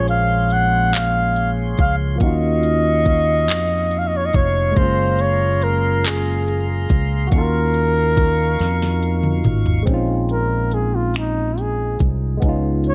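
A breathy, whispered flugelhorn carries the melody over a barky, lightly overdriven tine electric piano with phaser, a clear tonewheel organ turning through a slow rotary speaker, and a dark, round fingered electric bass, as a smooth electronic R&B kit with soft kick, fat snare, finger snaps and handclaps settles in just after. This cut from a slow, sultry six-eight R&B piece drifts through lush ninth chords, with the intimate horn and up-front drums and bass in a dry, close sound. A drum fill runs from 8.6 seconds, the organ drops out at 9.8 seconds, and from 9.9 seconds the flugelhorn takes a yearning solo with light vibrato.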